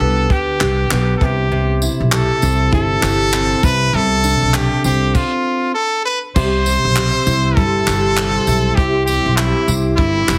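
A heavily compressed, radio-style sound in a moderate studio room frames this carefree, easy-going acoustic pop excerpt in C major at 99 BPM, with a swung sixteenth-note feel moving through G, C and Dm. A brilliant, forceful trumpet carries the melody with light vibrato, over a full-bodied, fingerpicked jumbo steel-string guitar with plate reverb and a woody, thumpy pizzicato upright bass on gut strings. A dry cocktail drum kit with a punchy kick, dark crash cymbal, handclaps and tambourine comes in at 0.3 s, the band breaks for a stop at 5.1 s, and a very quiet, glassy, ethereal FM pad with ensemble chorus enters at 7.1 s.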